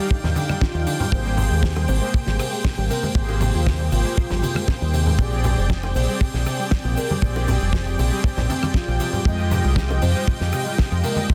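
A sunny, groovy nu-disco passage at 118 BPM opens on a soft, octave-layered synth lead carrying the melody through chorus, phaser and tape echo, set behind mellow, brassy synth brass, a lush, warbling unison pad holding sustained chords, and a round, gritty analog pluck spinning arpeggios, with the brass, pad and pluck all sidechain pumping. A dry, tight kick arrives up front at 0.1 s with ringing hand percussion of tube shaker, congas and bongos in the background, and at 0.2 s a fingered electric bass with an envelope filter and a damped 70s kit with a fat snare, hi-hat and rim click fill out the groove. The harmony moves through Ebmaj9, Abmaj9, Bb13 and Fm9 in a dense, heavily limited modern master.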